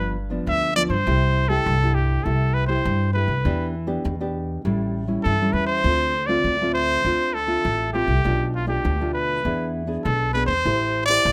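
A straight 4/4 pulse at 100 BPM carries this bittersweet yet lively samba and choro fragment in A minor, where a clear, up-front trumpet sings a jazz-style solo melody with light vibrato over thumb-plucked classical nylon-string guitar on old strings and a thumpy pizzicato upright bass, all in a small room with a rough home-demo feel as the chords move from G7 through Bm7b5 and E7 to Am7.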